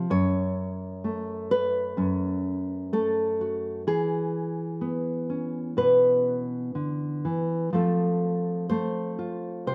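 A nylon-string guitar plays alone, fingerpicked and up front, with a dark, full-bodied tone and a deep classical character that spans F#2 to C#5. This short folk fragment, cut from a longer piece, moves at a rubato 63 BPM in 4/4, tuned to A4 = 442 Hz, drifting through F#m, E6 at 3.9 seconds and F at 7.7 seconds with a pastoral, hopeful mood. The sound is dry and close, captured outdoors with little reverb and only the guitar's own resonance around it.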